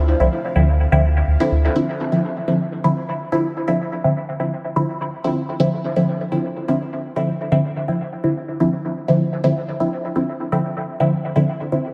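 A round, deep analog bass and a bright, bubbling, resonant texture open this meditative, hypnotic dub techno excerpt, both dropping away by 1.8 s to leave muted, detuned dub chord stabs with phaser and dub echo upfront over a barely audible, moody sawtooth pad, all bathed in a lush hall reverb with lossy compression artefacts.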